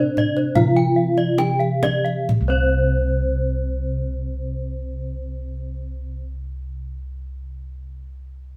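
A brief, brilliant and ceremonial cut from a longer Balinese gamelan piece opens with a mellow bronze metallophone melody struck with padded mallets, a dark, smooth metallophone accompaniment in the background, round bossed gongs up front carrying the bass, and two high metallophone arpeggio lines, one bright and mid-forward and the other vintage and band-limited, with the second line joining at 0.2 seconds, all shimmering with paired-tuning beats. A deep, close and dry kendang plays from 0.2 to 2.7 seconds as the ensemble slows down until 2.3 seconds in a live room with a studio reverb.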